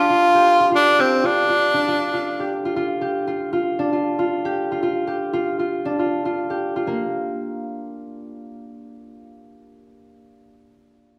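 Afrobeat at 117 BPM in 4/4, with a swung sixteenth-note feel and a joyful, funky mood, cut from a longer piece. An edgy tenor saxophone opens up front as the solo voice, playing a short pop-style melody with light vibrato before it stops at 2.5 seconds. A fingerpicked concert harp, also up front, rings out acoustic arpeggios over a D minor add11 chord and carries on alone until 10.1 seconds. At 6.9 seconds the music moves into a second section where the chord falls away. The band plays live in one room, bathed in a wet, large studio reverb.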